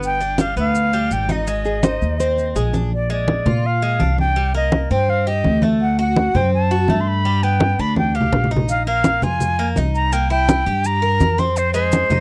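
A dry, close 1970s-style studio sound frames this danceable Cuban son and guajira excerpt in C minor at 166 BPM, where an airy, vibrato-rich jazz flute carries the melody up front over a woody, thumpy pizzicato upright bass, ringing low-tuned congas and bright, metallic arpeggios from a double-strung Cuban tres, while grainy maracas drop out at 2.9 s and return at 8.7 s, and a fingerpicked flamenco guitar adds a brief second line from 1.7 s.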